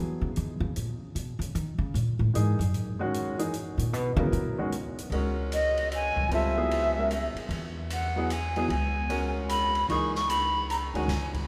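Bathed in a wet church reverb with a 3.7-second decay, this cut from a longer modal jazz piece sounds searching and spiritual, swinging in 3/4 at 151 BPM in C# dorian. A woody, pizzicato upright bass with steel strings sits up front and carries a solo through the opening bars. An open jazz drum kit plays hi-hat, kick, ride and snare with a natural small-room character, dark cymbals, a medium-tuned snare and a boomy kick. The baby grand piano, open and warm with long sustain, sounds briefly at the very start and returns with accompaniment from 2.3 seconds as the harmony moves from B to C#m7 and back to B. At 5.5 seconds a silver concert flute takes the melody, pure and expressive, its tongued notes and vibrato placed forward yet sounding distant in the hall.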